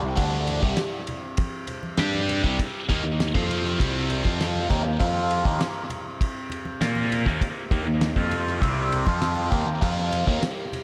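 A straight 4/4 pulse at 100 BPM drives this dark, mysterious psychedelic rock excerpt, with a cloth-damped drum kit entering at 0.2 s with a tight kick, fat snare and dark ride cymbal under tape echo, joined by very quiet, close, low-tuned congas at 0.5 s. A biting, double-tracked overdriven guitar riff sits up front through phaser and tape echo, over a round, punchy fuzz bass and a buzzing, shimmering tanpura drone in the background. The harmony moves from Csus2 to Ebadd9/C at 2.9 s, all in an echo-heavy mix with light reverb.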